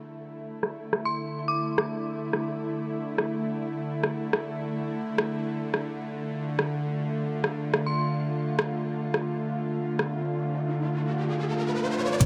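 Deep dubstep with a dark, meditative mood, moving in a half-time feel with a swung pulse, heard as a short cut from a longer piece. A tense, nasal, bowed-like drone holds sustained chords from the start, its bright, evolving sawtooth tone carrying vibrato and its own reverb, all set in a huge ambient space. At 0.6 seconds a garage drum kit enters up front with metallic hats and rim clicks, their snare, hats and cymbals dulled by low-pass filtering while a filter sweep runs across the drums. An eerie, inharmonic synth bell sounds two brief high phrases with chorus, tremolo and dub echo, decaying into a long release. A riser builds from 10.5 seconds into a sub drop, and at 12.2 seconds a deep, layered electronic kick lands with a very quiet, round dub sub bass on a low D as the cut ends.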